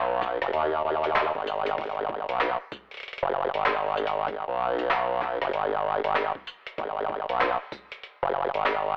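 A swung 96 BPM glitch hop groove in 4/4 and G# minor sets a gritty, funky mood. A wobbling formant-sweep bass sits up front from 0.0 s, its pulse-and-sine tone thickened by chorus and tube saturation. A compressed, sampler-style boom bap kit of handclaps, hi-hat, rim click and tambourine joins at 0.2 s with a thumpy electronic kick, both re-recorded in a large room, and the dry, crackling mix carries a telephone-like, transformer-saturated edge in this short cut from a longer piece.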